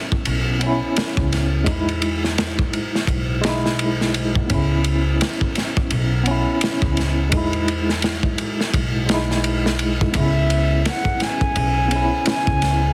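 A swung sixteenth-note trip hop groove in 4/4 rides on a gritty, saturated breakbeat kit of punchy kick, medium-tuned snare and dark ride cymbal, with a woody pizzicato upright bass underneath. A worn, slightly out-of-tune tine electric piano with medium tremolo and tape echo sets a brooding, cinematic mood in a small room with light reverb and a heavily compressed, radio-like sound. At 10.2 s an airy, distant concert flute and a very quiet sawtooth string-machine cello pad with ensemble chorus enter together as this fragment of a longer piece closes.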